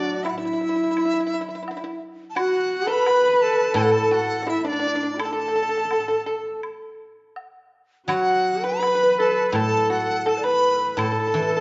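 Chinese traditional chamber music, festive and graceful, flows in a free rubato as a breathy, buzzing dizi carries the melody with vibrato and an unsteady tone over background lines from an airy, reedy xiao, a husky, distant horsehead fiddle with portamento and a dry, percussive pipa. A silvery, ringing guzheng supplies the low accompaniment, while a close woodblock taps quietly in the background from 0.3 seconds. The recital hall reverb is wet, and the production is dark and warm throughout this fragment of a longer piece.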